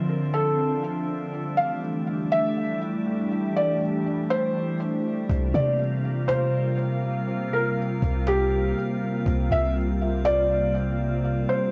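Atmospheric cloud-rap with a melancholic, hazy half-time feel, where a muted felt upright piano carries the melody through cassette tape and tape echo over a glassy, warbling FM pad with ensemble chorus and a drifting glass-harmonics texture, a barely audible downlifter sounds until 1.3 s, and at 5.3 s a deep, boomy 808-style bass arrives up front alongside a snappy cajon tucked in the background, all bathed in spring reverb with a home-cassette character in this short cut from a longer piece.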